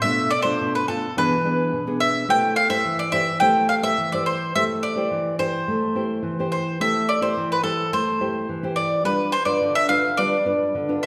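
A bright, woody mandolin carries the melody up front with picked double strings, joined throughout by a warm, fingerpicked classical nylon-string guitar, in this yearning, nostalgic samba fragment at 106 BPM in A minor. The harmony moves from Bm7b5 to E7 and settles on Am7, reaching G7 at 9.1 seconds as the opening section repeats. A wet recital-hall reverb surrounds the duo with the resonance of a church or concert hall.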